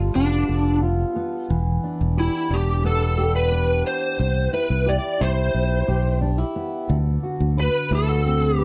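Laid-back and hazy, this short indie and bedroom pop excerpt at 89 BPM in C major pairs a dark, full-bodied fingerpicked acoustic guitar, with finger squeak, subtle chorus and a warbly pitch drift, with a round, up-front fingered electric bass, while an overdriven slide guitar carries the melody from 0.2 s through ensemble chorus and slapback echo, all over G9, Em7, Cmaj7 and D13 chords in a dark, warm small-room production marked by lossy compression artefacts.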